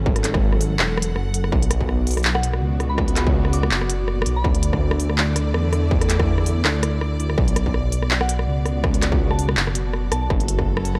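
A swung, half-time drum and bass groove drives this spacious, tense piece, with a distorted electronic kick and an industrial kit of handclaps, crisp hi-hats and rim clicks sitting up front, both with a tape-warm, large-room character. Beneath them a dark, rumbling, detuned saw bass with tube saturation holds the low end, while a lush bowed string section sustains vibrato-rich chords with sidechain pumping, moving through F#m, Bm and Dsus2. A soft FM synth bell with chorus and dub echo drifts in the background from 2.3 to 4.5 seconds and again from 8.2 seconds, all in a dry mix with little reverb.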